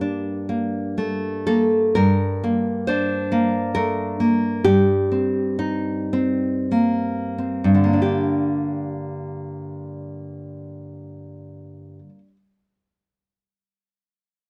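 A fingerpicked nylon-string guitar carries this short romantic passage cut from a longer solo classical piece, its full-bodied, deep tone placed up front in a dark production with light reverb. In a rubato 3/4 with a wistful yet passionate mood, the playing slows from 0.5 to 8.0 seconds as the harmony moves from G minor to C minor over a G bass at 4.6 seconds, then settles back on G minor at 8.0 seconds.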